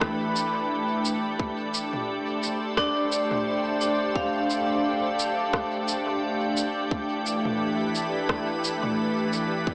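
A meditative, deep stretch of ambient dub opens with a soft, organ-like pad holding sustained chords, a hard-mallet vibraphone spinning arpeggios and a tight electronic kick sitting up front. The pad sounds pure and bright, its slow attack and long release softened further by ensemble chorus and its own reverb, while the chords move from Em7 to Dm7 and back to Em7 near 6.9 seconds. The vibraphone rings with a metallic edge and fast motor vibrato in a boxy small room, its notes trailing off through dub echo until it stops at 6.9 seconds. Beneath it, an organic electronic kit adds rim clicks, shaker and toms, also thrown into dub echo, over a gently swung 4/4 groove. The whole piece is bathed in a wet echo-chamber reverb and has a small-speaker character, and this short excerpt is cut from a longer piece.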